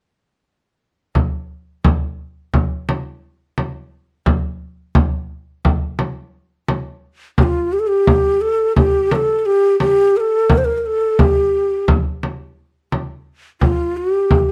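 A straight 9/8 pulse at 173 BPM in eighths drives this hypnotic, longing Turkish makam ensemble piece, cut from a longer work, as a deep, large acoustic frame drum played with hard hands sounds alone from 1.2 s until a breathy, mellow, end-blown ney enters at 7.4 s, carrying the expressive tongued melody between F4 and C5 with vibrato and plate reverb, both parts close-miked and up front in a detailed, lightly reverberant room.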